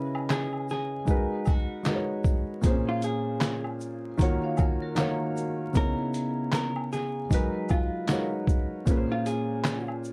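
Reflective and hazy, this short lo-fi hip hop passage cut from a longer piece moves at 77 BPM in 4/4 with a swung sixteenth-note feel, set in Bb phrygian with tuning slightly below standard pitch. A felt-muted upright piano sits up front with a soft, intimate tone, carrying the minor ninth chords from Dbm9 through Abm9, Bbm9 and Ebm9 beneath a dark, clean hollow-body jazz guitar that picks out the melody through a low-pass filter and plate reverb. The trip hop sampler-style drum kit enters at 0.3 seconds, gritty and pitched down, with a thumpy kick, medium-tuned snare, hi-hat, shaker and handclaps, recorded in a small room and placed prominently. Woodblock and tube shaker add a band-limited, vintage acoustic layer in the background. Briefly, from 4.4 to 5.7 seconds, a vibraphone struck with medium hard mallets rings out with slow motor vibrato, its bright, airy shimmer colored by analog delay and plate reverb. 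The dark production is wrapped in vinyl crackle and light reverb, giving the whole a warm, hazy glow.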